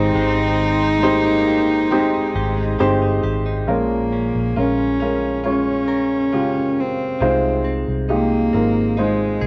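Heartfelt and tender, this pop ballad moves at a slow 68 BPM in a straight 4/4, heard here as a short cut from a longer piece with the soft haze of a home cassette recording and light reverb. A solo bowed cello carries the melody up front, its tone nasal and boxy yet smooth and even, with a singing vibrato. Beside it a natural baby grand piano with short sustain plays the accompaniment, while a clean, compressed electric guitar recorded direct picks arpeggios in the background with a subtle chorus. A dark, round, foam-muted fingered electric bass gives punchy low support throughout. For the opening seconds, a reedy chamber cello section with a period gut-string tone adds a second line until 3.2 s, and a very quiet, shimmering pulse-width pad with a slow attack and mellow retro glow holds chords until 3.6 s. The harmony moves from Abmaj7 to Bbm7 at 3.7 s, then settles on Fm7 at 7.2 s.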